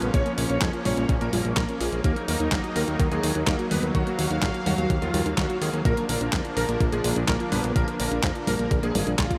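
This short excerpt of nostalgic, danceable Italo disco opens with a clear, vintage electric grand piano carrying the melody over a lush, detuned unison pad and a soft, round pluck tracing arpeggios, all in Eb minor at 126 BPM. The piano is treated with ensemble chorus and analog delay. The pad holds sustained chords with a soft attack and chorus, while the dark, very quiet pluck sits underneath. A fat, nasal analog bass with a saturated sawtooth edge and its own analog delay anchors the low end. A clean 12-bit drum machine playing congas, handclaps, hi-hat and a medium-tuned snare runs from the start, and a thumpy, overdriven electronic kick joins at 0.1 seconds, both drum parts overdriven and re-recorded in a large room. The whole mix is soaked in a huge, dreamy ambient reverb as the chords move from Bbm to Ebm and then to Bb at 5.9 seconds.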